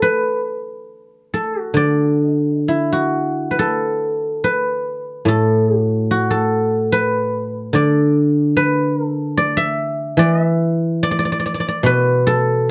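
A solo guzheng, played with fingerpicks and placed up front, carries this pastoral, flowing Chinese traditional piece, its silvery, ringing tone spanning A2 to E5 in the D gong mode. The playing moves with a rubato feel around 63-75 BPM in 4/4, shifting into a new section at 3.6 seconds before the 12.7-second cut ends. Light reverb and a dark, warm production give the plucked strings a soft glow.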